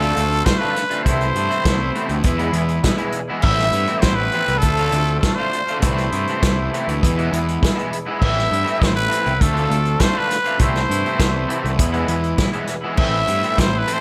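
This indie rock excerpt moves at 101 BPM in a straight 4/4 in A minor, with a restless, bittersweet mood. A growling trumpet carries the melody up front, its brilliant, raspy tone shaped by vibrato and scooped notes, close-miked and set in plate reverb in a pop-styled solo voice. Underneath, a bright, crunchy overdriven guitar plays a riff colored by ensemble chorus and digital delay, while a clean, twangy electric guitar adds its own picked riff bathed in spring reverb. A fuzzy, overdriven electric bass sits prominently in the mix, and an acoustic drum kit played with bundle sticks gives a punchy kick, medium-tuned snare, hi-hat and dark crash cymbals a distant, roomy studio character. The harmony cycles through Dm7, Amadd9/C, E and Amadd9, and the whole passage sits in light reverb.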